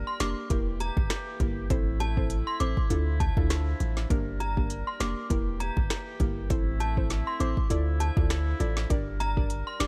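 A swung 16th-note dancehall groove at 100 BPM in 4/4 drives this hypnotic, tough D minor excerpt, built on an up-front electronic drum kit with a deep kick, woody snare, smooth hats, rim clicks and finger snaps, with very quiet, tight, high-tuned bongos tucked beneath and a punchy sine sub bass with a pitch-drop attack. A close-miked woodwind section holds warm sustained chords that pump with sidechain compression, while a soft, round, dark pluck with chorus and sidechain pumping fills the middle, cycling through Gm, Edim, Am and Dmadd9. On top, an inharmonic, warbling FM synth chime rings through ensemble chorus, phaser and digital delay, all in a dry, close space.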